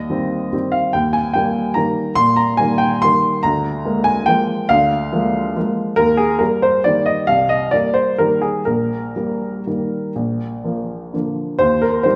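A solo baby grand piano opens the recording at 0.0 s, playing a classical waltz in 3/4 with an elegant, graceful character. The tone is warm and present, placed up front, and the part spans from Bb1 up to C6. The tempo moves with rubato somewhere between 116 and 152 BPM, giving the dance a supple, breathing lilt in Eb major, tuned to A4 = 438 Hz. The harmony begins on Cm/Eb and settles onto Eb, passing through Bb7/D, Cm7 and Eb/Bb before a Bb chord resolves home to Eb at 11.6 s. A wet recital hall reverb with a 1.5 s decay surrounds the instrument with a spacious glow. This brief passage is cut from a longer piece, and the piano rings on until 12.2 s.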